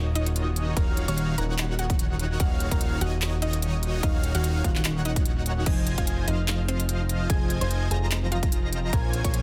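Densely limited and fairly dry, this bittersweet, emotional future bass, cut from a longer piece, moves at 147 BPM with a swung half-time feel in Eb dorian, shifting from Ebm9 to Fm7 at 5.7 s, as a fat, detuned sawtooth bass with a filter sweep and an overdriven, punchy electronic kick sit up front, a bold, wave-folded polysynth riff pumps under sidechain, a trap kit adds crisp hats, handclaps and crash in a small room, a woody FM mallet-like pluck carries the melody through tape echo from 0.2 s, an airy lead with vibrato spins arpeggios in the background, and a very quiet, ringing, fingerpicked concert harp traces arpeggios of its own.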